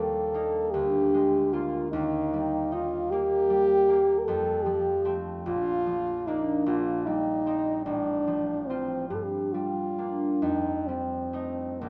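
A mellow French horn and a concert harp begin together in this lyrical, romantic classical duo, the horn singing the melody with light vibrato and a soft attack while the fingerpicked harp rings out beneath it, both placed up front. The 6/8 flows with an unhurried rubato, and the harmony moves from Eb through F and Gm before settling on F9 at 10.4 seconds. A moderate scoring-stage reverb adds a warm glow to this brief passage taken from a longer piece, and the sound stays soft and rounded at the top.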